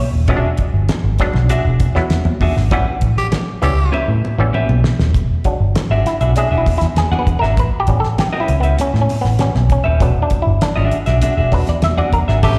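An auto-wah clav opens this funky, playful excerpt with a fill, its bright, twangy, overdriven stabs carrying a slapback echo. Almost at once a round, foam-muted picked bass sits up front, joined by a dry 70s drum kit with a fat snare and tight kick, a clean, compressed electric guitar dressed in spring reverb, and high-tuned congas ringing in the background. The band hits accents from 2.7 seconds, a drum fill leads into the next section, and a raspy, gritty tenor saxophone appears briefly on a single note before returning at the very end. From 5.1 seconds the clav takes a solo over the groove as the chords move between E9 and A9. The performance sounds like a live gig heard through a venue's PA, with recital hall reverb and small room ambience.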